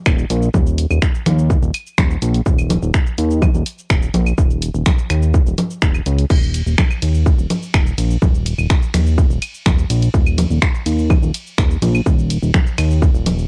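A fat, sawtooth analog bass drives this hypnotic stretch of melodic techno, its thick, detuned and saturated tone sitting up front with a fast attack and sustained notes, pumping under sidechain compression. Alongside it, a punchy electronic kick drum, also up front, carries a tape-warm character and the feel of being re-recorded in a small room, running until 13.1 seconds. A layered deep house kit fills in the groove with claves, congas, finger snaps, shaker, hi-hat, ride and crash cymbal, sitting lower in the mix and colored by cassette tape. The playing stays in straight 4/4 throughout this single section cut from a longer piece. The sound is dry, with little reverb, giving it the intimate grain of a home recording on cassette.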